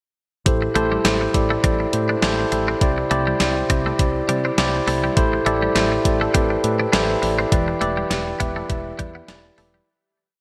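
Nostalgic and dramatic, this brief 1980s-style pop piece with a light sixteenth-note swing sets up-front tine electric piano chords in close voicing and eighth-note rhythm, shimmering with reverb, over a round, driving fretless bass, a gated digital drum machine with a thumpy kick and a big gated-reverb snare backbeat, and a twangy, chorused twelve-string guitar picking a muted single-note riff, all bathed in a lush hall sound as it moves from Am7 through Cadd9 to Em7 and fades out from 7.5 seconds.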